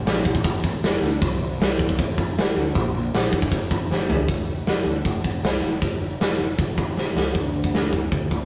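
A straight 4/4 punk rock beat drives along at 156 BPM, angry and raw, with a big acoustic drum kit up front: tight kick, medium-tuned snare, hi-hat and toms ringing in a bright stone room. Underneath, a picked electric bass growls low with punchy overdriven fuzz, and drum fills at 3.9 and 7.0 seconds push into new sections at 4.3 and 7.4 seconds. The short cut from a longer piece has the rough feel of a rehearsal room, with light reverb.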